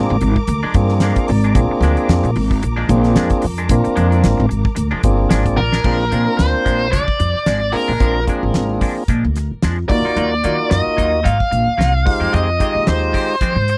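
A swung 16th-note groove at 111 BPM in 4/4 drives this bright, funky electric jazz fusion excerpt in Bb mixolydian, where a woody, thumpy pizzicato upright bass and a damped 70s drum kit with fat snare and dark cymbals carry the whole cut. Key-clicking overdriven tonewheel organ plays through a stopped rotary speaker and adds fills, a twangy chorused clean guitar adds stabs, and lush bowed strings hold chords until 5.8 seconds. A smooth overdriven lead guitar with tape echo enters at 5.6 seconds, all captured in a dry, close 1970s-style studio sound moving from Bb7 to Ebmadd9 and Fm9.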